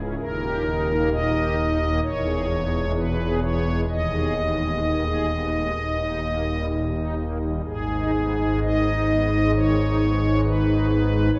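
A solo pipe organ, voiced on shimmering strings celeste stops with a soft, romantic character, carries this solemn, dark chorale-style fragment in G# minor, ranging from deep pedal notes up to the treble. At a slow, rubato 65 BPM in 4/4, the harmony moves from D# through E and a G# minor chord over D#, returns to D#, and then settles on G# minor at 7.6 seconds. The organ sits up front yet is heard from further back in a cathedral, whose long, wet reverb of 5.3 seconds gives the sound a dim, muted haze.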